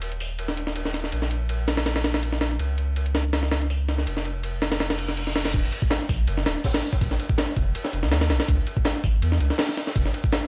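A swung sixteenth-note breakbeat at 163 BPM in 4/4 drives this dark, atmospheric drum and bass and jungle excerpt in Eb minor, taken from a longer piece. Up front, a compressed, sampler-style break kit with a thumpy kick, high-tuned snare, hi-hat, ride and crash plays from the start, over a deep, thick sub bass with a triangle-like tone, fast attack and long sustain. At 5.0 seconds an electronic reverse cymbal rises in the background, leading into the drop at 5.5 seconds. There a second, crunchy acoustic break kit joins behind the main kit, with a saturated, smooth character, a rolled-off top and filtered hi-hat, shaker and snare. The whole mix sits in a small room ambience with a dry, gritty hardware feel and a layer of vinyl crackle.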